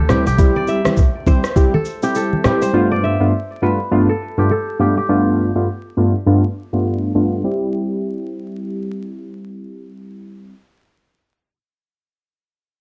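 Afrobeats with a breezy, sunny mood, this short passage cut from a longer piece moves in 4/4 with a lightly swung sixteenth-note feel. Up front, detuned sawtooth analog keys carry the accompaniment throughout, their round, full-bodied chords shaped by chorus and a low-pass filter that sweeps until 7.4 seconds. A fingerpicked acoustic kora rings out a crisp, bright riff, treated with tape echo and its own low-pass filter, and drops out at 6.4 seconds. At the start, an electronic afro-pop kit with a knocking kick, rim click and shaker, roughened by vintage 12-bit sampler grit, sounds alongside damped, low-tuned congas with thin skins and a very quiet downlifter, and these three parts stop around 2.7 seconds. The harmony moves from C to G7 and back to C, set in a small room with a dark mix and a layer of vinyl crackle.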